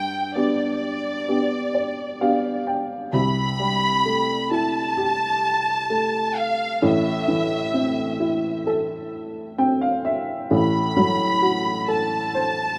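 Hopeful and emotional, this slow 65 BPM pop piece in C major sets a lush, smooth bowed violin section with vibrato carrying the melody over a dark, woody, slightly detuned upright piano, whose boxy, short-sustained accompaniment adds fills at 1.3 and 9.1 seconds as the chords move from G through C6 and Am to Am69, both parts sitting up front with plate reverb in a rough home demo mix taken from a longer piece.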